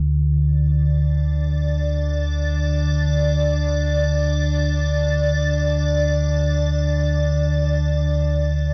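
A deep, rumbling drone anchors this desolate dark ambient piece in free time, its ominous, detuned tone carrying a nasal, ring-modulated edge and a filter sweep that runs through the whole 8.7-second excerpt. At 0.9 seconds an icy glass pad joins high above, crystalline and airy with a chorus shimmer. Both sit up front in a dreamy mix soaked in a huge reverb that stretches every sustained note into a cold, cavernous haze.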